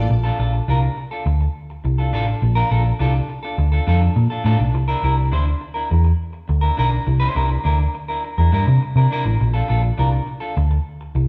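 Clean electric guitar and a hollow-body short-scale picked electric bass start together in this joyful, danceable disco excerpt, the round, dark bass sitting up front while the warm, picked guitar rings with spring reverb further back. The harmony moves from Bbmaj7 to C9 at 4.7 seconds and back to Bbmaj7 at 9.4 seconds. The band plays live in one room, its wet stone reverb giving the short cut a roomy, lively sound.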